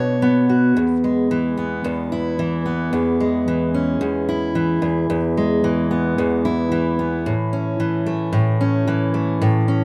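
A fingerpicked steel-string acoustic guitar plays alone and up front, its auditorium-style body tone carrying audible finger squeak through light reverb in a rough home demo mix. This heartfelt, carefree pop fragment moves at 111 BPM in 4/4 with a 16th-note swing, in A major, passing through Bmadd9, E and C#m/E before settling onto an A chord at 7.3 seconds. The guitar spans from low E2 up to C#5 over just under ten seconds cut from a longer piece.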